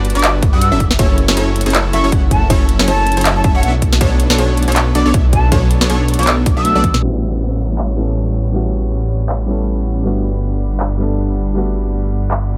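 A swung, half-time future bass groove is caught mid-drop. An overdriven, punchy electronic kick and a trap kit with a sharp snare, metallic hats, claps, ride and toms sit under a thick, chorused detuned saw bass, while bright supersaw stabs, a background unison pluck arpeggio and a very quiet airy pad frame a breathy, distant jazz flute melody. After a short drum fill, at 7.0 seconds the stabs, pluck, flute and kick drop away, a soft felt-muted upright piano with audible action noise takes over the accompaniment, a faint downlifter sounds beside it and the drums pass through a filter sweep, leaving a bittersweet, dreamy feel in a dry, dark-toned mix.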